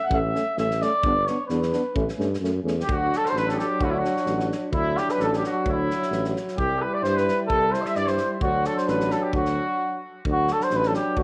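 A cup-muted cornet opens this wild, festive Balkan brass band excerpt, its soft, veiled tone carrying vibrato as it sits up front with the melody over a lightly swung two-beat pulse. Mellow euphonium and a smooth-topped trombone supply the accompaniment, the trombone tucked in the background, while a tuba with tube saturation anchors the bass up front. A natural acoustic drum kit of tight kick and medium-tuned snare plays from a roomy distance. At 2.8 seconds a clear trumpet with light vibrato and tape echo joins as a second line, holding until 10.0 seconds, partway through a brief break in the music. Plate reverb and a small room give the band an air of space, with the brass all played in a classical style.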